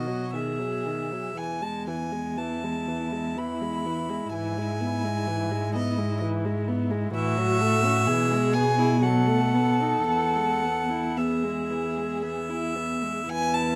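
Closely miked and nearly dry, this tender, slow romantic string quartet passage in E major drifts at 54-65 BPM in a rubato 3/4, cut from a longer piece. Up front, the first violin sings a pure, floating melody with a soft attack, while the second violin adds a woody, distant second line and the viola supplies intimate accompaniment with an airy bow, all played sul tasto with vibrato on the lower parts. The cello anchors a dark, close bass as the harmony moves from B through E and E/G# to F#m7/A, then cadences via E/B and B7 home to E at 10.1 seconds.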